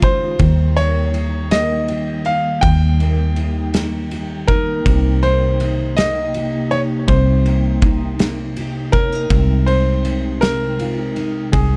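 Romantic and tender, this fragment of a six-eight pop ballad moves at 54 BPM in 6/8 through Eb, Cm7 and Abmaj7/C. A clear, up-front concert grand piano with tape echo carries the melody over a double-tracked, full-bodied fingerpicked steel-string acoustic guitar and a flute-like tonewheel organ holding sustained chords with chorus vibrato, key click and a slow rotary speaker. Beneath them, a round, foam-muted electric bass and a loose indie kit with a punchy kick, snare, dark ride cymbal and pumping room sound sit in a small room with a dark, warm production.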